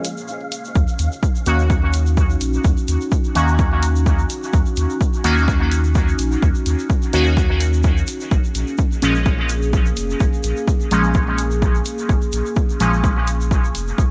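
A breathy, wind-like tuned noise texture drifts over an overdriven electronic hi-hat, a grainy egg shaker and a dark, detuned analog pad on Bbm7 before a punchy, up-front kick and a round sine sub bass drop in at 0.8 seconds, launching a hypnotic, hazy dub techno groove in Eb minor at 127 BPM with a light 16th-note swing, where a juicy, resonant polysynth with filter sweeps, chorus, phaser and dub echo fires stabs over Ebm7 and Bbm7 while the bass, pad and stabs pump against the kick under light reverb, bright 1980s-style digital sheen and vinyl crackle.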